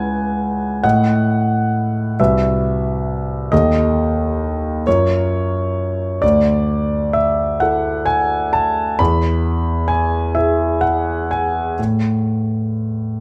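A clear concert grand piano carries this short passage alone, its polished tone sitting up front with a deep bass and a long sustain that lets each chord ring. The music is classical in an impressionist vein, dreamy and hazy, unfolding in a slow 6/8 with uneven beats and a free, rubato feel. The harmony drifts through colorful chords, moving from C#m7 through Cmaj7#11 and F#maj7 before settling on E at 9.0 seconds. The playing spans from the low bass register up into the upper treble across the full 13.2 seconds. Light reverb and close, detailed microphones keep the sound clear and present. The recording is a fragment lifted from a longer piece.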